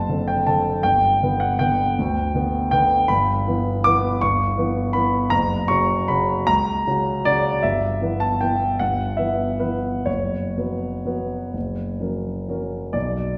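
A warm concert grand piano with a deep bass sits up front, playing a bittersweet, elegant classical waltz alone in 3/4 with a free rubato feel, its harmony moving from D7/F# through G and Em/G to a suspended F# chord that resolves to F# in a 13.4-second fragment cut from a longer piece, with the lush reverb of a recital hall heard from further back in the room.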